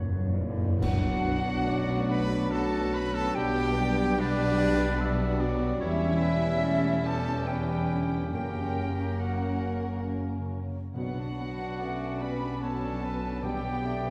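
Solemn and melancholic, this slow romantic orchestral movement in B minor moves in a rubato 3/4 at roughly 62-75 BPM, cut from a longer piece. Soft-mallet timpani with a round tone open with a brief fill beneath a dark, distant clarinet, ringing fingerpicked harp arpeggios and a bowed bass line from smooth double basses and cellos. At 0.8 s a band accent arrives with dark clash cymbals and concert bass drum, and the lush violin section takes up the high melody, joined by a pure, metal-toned flute on the same register and a woody, very quiet second violin line. Dark violas and a mellow bassoon fill the accompaniment, mellow French horns and a present trombone section hold sustained chords, and a bright, close-miked trumpet adds stabs, while a bright oboe slips in from 1.7 s in the background. The timpani return at 8.3 s as the harmony cycles through B minor, G over B, C-sharp diminished and F-sharp, all set back in a wet scoring-stage reverb that lends the orchestra a distant, spacious sound.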